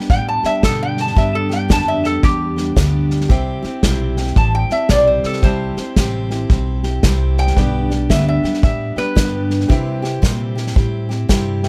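Closely miked and nearly dry, this down-home, nostalgic honky-tonk and classic country passage swings at 112 BPM in C major, with an up-front lap resonator guitar carrying a metallic, nasal slide solo played with a steel bar and fingerpicks over a full-bodied picked dreadnought acoustic guitar, a thumpy pizzicato upright bass on gut strings, an unplugged drum kit played with bundle sticks featuring a punchy kick, medium-tuned snare and hi-hat, and an intimate, woody upright piano with audible action noise that enters in the background at 3.3 seconds.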